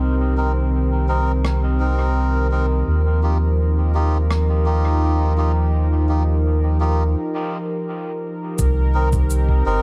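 An echo-heavy mix with light reverb and studio ambience frames this hazy, meditative ambient dub piece in C minor at 84 BPM, moving from Cm7 to Ebadd9. A smooth, chorused sawtooth pad holds sustained chords over a deep, round sub bass that sits up front, while a faint glassy texture of drifting overtones hangs above and a reedy, breathy melodica plays filtered stabs soaked in dub echo. Brushed rim click and cabasa from a small room tick along from 1.4 seconds, with a break arriving at 7.2 seconds, and a muffled, pitched-down kick arrives softly at 8.6 seconds as this short excerpt from a longer piece returns to Cm7.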